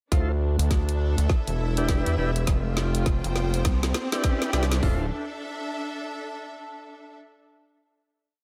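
Glitch hop at 102 BPM in D dorian, gritty and playful, a whole short piece that builds from 0.1 s to 4.8 s over Dm9, Em7, F5 and Cmaj7 before landing on a final Dm9 chord held until 7.2 s. Two layered electronic drum kits carry a drum fill through the build, one with a tight kick, floor tom and open hats sitting up front, the other a swung beat with edits on closed hats and a woody snare. A saturated, aggressive sawtooth synth bass with oscillator sync plays chopped phrases up front, while a slow rotary tonewheel organ with 12-bit grit, tape echo and sidechain pumping punches syncopated rootless stabs, a very quiet riser marks the transition, and a lush, bowed string section with its own sidechain pumping sustains slowly shifting chords until 7.1 s in a dry sound.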